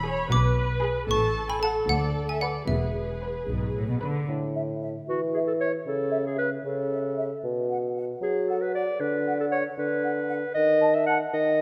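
Bathed in a wet concert-hall reverb, this playful, mischievous film cue in 6/8 opens with a dry, woody xylophone carrying the melody over veiled, con sordino strings (two muted violin sections, an up-front viola section, a close cello section and a lush, distant double bass section). At about 4.3 seconds these give way to a dark solo bassoon, joined shortly after by a pure flute ensemble in the background and then a mellow, vintage-toned clarinet up front for the whimsical second phrase.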